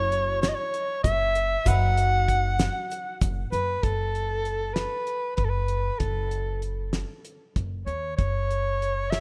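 Progressive instrumental band music in a tense, driving 7/8, counted at 193 BPM in eighths with a straight feel and set in F# dorian. This is a cut from a longer piece. A breathy soprano saxophone carries the melody throughout, its whispered, intimate tone marked by vibrato, a soft attack and a touch of digital delay, sitting up front in a pop-style solo role. Beneath it, a woody, thumpy pizzicato upright bass and a cloth-damped, thuddy drum kit with a fat snare, tight kick and rolled-off top drive the rhythm from a small-room perspective. In the opening stretch, a dark, clean, double-tracked archtop guitar adds picked hollow-body chords over C#m/F# and B/F#, joined by a grainy, bright egg shaker in the background, before both drop away around 3.8 seconds. The second part moves through B5/F# to F#m before the harmony falls away at 8.2 seconds, all heard through light reverb in a rough home demo mix.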